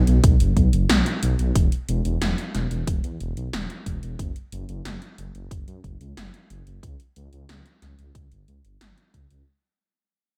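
Synthwave at 91 BPM in a straight 4/4, this short cut from a longer piece feels driving and nostalgic, fading out across its full 9.5 seconds. A dark detuned saw bass anchors it from the start, a deep, rumbling unison tone with a beating quality, fast attack and sustained notes ranging from E1 to F#2, thickened by tube saturation. An electronic kick drum sits up front with a punchy, layered, produced character. The 80s electronic pad drums add metallic hi-hats and a gated snare bathed in gated reverb, giving the groove its analog flavor. The whole mix lives in a digital ambience, tuned slightly sharp to A4 = 441 Hz.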